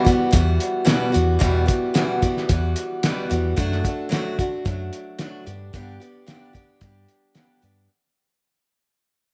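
A light studio reverb surrounds this brief, fading excerpt of dusty, wistful folk rock with a heartland rock feel, moving at 111 BPM in a straight 4/4 over Emadd9, D/F# and G. An up-front picked acoustic archtop guitar carries the accompaniment with an audible finger squeak, while a cloth-damped, muffled and gritty lo-fi drum kit thuds along on hi-hat, tight kick and fat snare. A dark, round, punchy fingered electric bass sits underneath, and the whole passage fades out across its 7.9 seconds.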